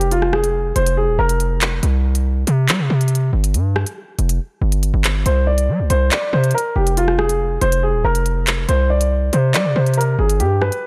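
This dark, tense drill track, cut from a longer piece, moves at 140 BPM in 4/4 with a half-time feel and tuning set to A4 = 442 Hz. A shadowy concert grand piano carries the melody between F4 and D5, playing from 0.0 to 1.8 seconds and returning at 5.3 seconds. Its mellow, natural tone has deep bass, short sustain and a delay, and it sits up front. A distorted 808-style bass runs from Eb1 to G3 with an aggressive, heavy, saturated character: a sine core with a noise layer, fast attack and decaying notes placed up front. The electronic drill drum kit supplies handclaps, rim clicks and crisp hi-hats, with a produced sheen, all within a digital ambience. The harmony cycles through Fm, C5, Fsus2 and back, with C5 returning every other change.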